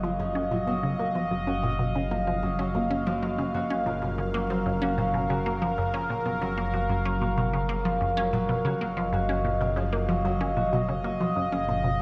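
An up-front, wave-folded pad of sawtooth and triangle tones holds evolving chords with a slow filter swell, colored by chorus and phaser, over a steady F#6 harmony in F# major at 94 BPM. Beneath it, a fingerpicked Celtic harp rings out acoustic arpeggios through analog delay, while a squelchy, ring-modulated blip pluck repeats a bright, snappy riff with phaser and delay, and a fat, detuned sawtooth bass anchors the low F#. The resulting 12-second cut from a longer piece of luminous, cosmic, sequencer-driven space music sits in a dark, warm mix washed in a long plate reverb.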